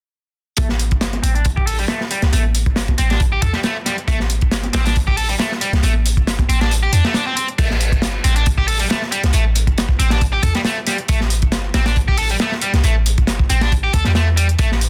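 Opening on an A7(no3) chord, this energetic, funky breakbeat excerpt at 137 BPM with a light 16th-note swing sets an up-front crunchy drum kit, saturated with a punchy kick, medium-tuned snare, dark cymbals and a rolled-off top, and a deep, boomy 808-style bass with a sine body and noise layer, against a bright, overdriven picked guitar riff carrying 12-bit sampler grit, dub echo and a filter sweep through the first section, while a tape-toned electronic hi-hat and thin-skinned, high-tuned congas sit in the background, the congas stopping at 6.5 seconds just before the kick drops out from 6.7 to 7.6 seconds, in a dry, dense, heavily limited mix.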